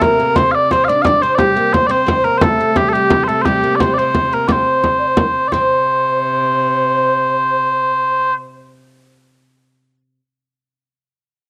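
A home cassette recording with light small-room reverb carries this driving, ancient-feeling medieval dance fragment in 6/8, where sweet small bagpipes play the melody up front over a distant, hollow alto flute and a woody, double-strung oud on second lines, a rich, ringing viola da gamba drone, and a deep, close frame drum played with hard hands that stops at 5.7 seconds.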